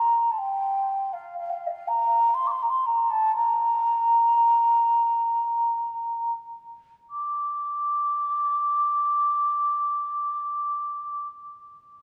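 Longing and mournful, this Celtic folk passage unfolds in a free, rubato triple metre, tuned slightly below standard pitch. A single baroque flute carries the whole piece alone from 0.0 to 11.3 seconds, moving between Eb5 and D6 with a hollow, woody, airy voice. Its straight tone and soft attacks keep the line gentle and mellow. The opening phrase slows gradually until about 7.1 seconds, when a second section begins and runs to the close of this fragment cut from a longer work. A long, wet church reverb surrounds the flute, and the dark production leaves it sounding both close and far away.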